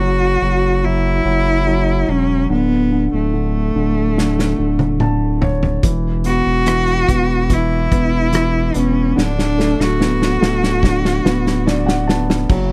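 A bowed cello carries the melody up front in this heartbroken, longing pop ballad fragment, its clear, focused tone shaded by vibrato from a single player. Beneath it, a grand piano plays the accompaniment with an intimate, natural sound, its action noise audible, and adds short fills of its own. A deep, thick sine sub bass sits up front as well, saturated with a fast attack and sustained notes. A loose acoustic drum kit enters with a fill at 4.2 seconds, bringing a tight kick, a medium-tuned snare, rim clicks, hi-hat, toms and crash cymbal in a small, pumping room, and it fills again from 9.2 seconds. The harmony moves from Esus2 through D5 and E5 to Bm7/D, and the overall sound is dry, with little reverb.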